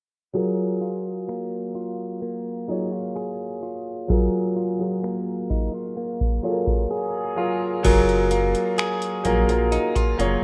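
A clear concert grand piano accompanies this dreamy, romantic contemporary R&B excerpt, joined by bright, clean electric guitar arpeggios with tape echo and, from 1.3 s, a booming analog drum machine of deep kick, finger snaps, metallic hi-hat and crash, while a filter sweep and light reverb shape the rough home-demo mix before a piano fill, the drums briefly falling silent at 6.9 s, and a rubbery, dark square bass entering at 7.8 s.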